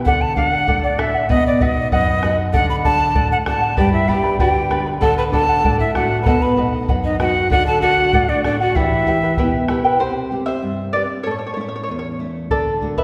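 Andean folk with an earthy, festive mood in a straight two-beat metre, where a breathy cane quena carries the up-front melody over fingerpicked shimmering charango, a full-bodied nylon-string guitar and a round, close bombo, joined at 3.8 s by a mellow, slightly unsteady bamboo pan flute with soft chiff as a distant second line, before the charango takes a brief solo from 10.0 s, all set in a spacious concert-hall reverb and cut from a longer piece.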